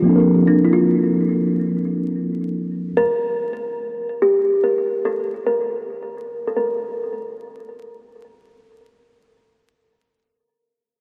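This hip hop excerpt unfolds in free time in B-flat major, cosy and mellow, opening on a Bbmaj9 chord from a worn, slightly out-of-tune tine electric piano that sits up front under a low-pass filter before stopping at 3.0 seconds. A woody, thumbnail-plucked kalimba carries the melody until 9.2 seconds, its short, bright notes filtered and trailed by delay. The dreamy mix is soaked in a huge ambient reverb and dusted with vinyl crackle.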